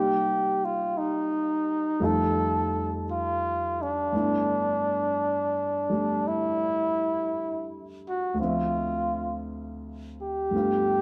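Late-night and romantic, this slow 56 BPM jazz ballad excerpt in G major, tuned to A4 = 436 Hz with a gentle swing, features a mellow, close-miked flugelhorn carrying the melody with light vibrato, soft attacks and scooped notes over an intimate grand piano whose audible action noise adds a natural touch, both bathed in a wet plate reverb as the harmony moves from Cm7 through F9 and G69 to Dm7.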